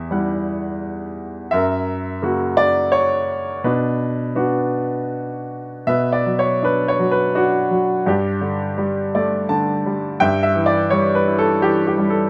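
Classical lyrical solo piano in B minor, dark and reflective, with a clear, up-front baby grand moving in rubato 3/4 at 84 BPM through chords from Emadd9 and F# to Bm, Gsus2 and G69 across a range of E2 to A5, adding a fill from 8.8 to 10.2 seconds within light reverb, in this 12.3-second passage cut from a longer piece.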